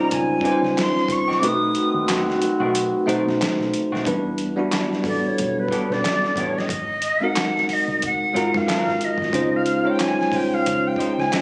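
Smooth and late-night, this neo-soul R&B groove swings lightly on a cut from a longer piece, with a bell-like tine electric piano up front and a reedy, airy jazz flute carrying the melody through a slapback echo, taking a solo from 4.1 seconds. An electric guitar through a small old amp adds a slightly broken-up second line, a muted fingered electric bass sits round and dark underneath, and a distant trombone section hits dark stabs until 3.7 seconds. A dusty, overdriven sampler-style kit of handclaps, hi-hat, snare and thumpy kick drives it all, the kick dropping out from 1.4 to 4.1 seconds, and the whole take sounds caught on a phone in a club room.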